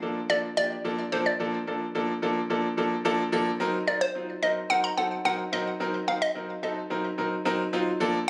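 Upbeat and euphoric, this short pop excerpt in straight 4/4 sets a hollow, bouncy, detuned square-wave pluck with chorus and digital delay carrying the up-front melody until 6.7 seconds over a brilliant grand piano accompaniment that moves from Bbmaj7 to Ebm6 at 3.6 seconds and rings on to 8.2 seconds, all captured on a phone in the room with light studio reverb.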